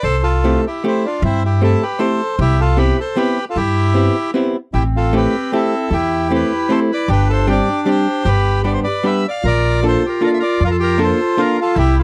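Bittersweet and whirling, this short musette waltz excerpt in C major turns at 154 BPM in a lightly swung 3/4, with a reedy, airy bandoneon carrying the melody up front over a woody pizzicato upright bass and a dark, hollow-bodied electric archtop guitar picking clean accompaniment from 0.4 seconds. A bright, classical-style clarinet enters at 4.7 seconds with a second line, while the harmony drifts from C6 and Cmaj7 through Am7 and a suspended G before closing on Bbmaj7. The sound is dry and close, like a 1970s studio session.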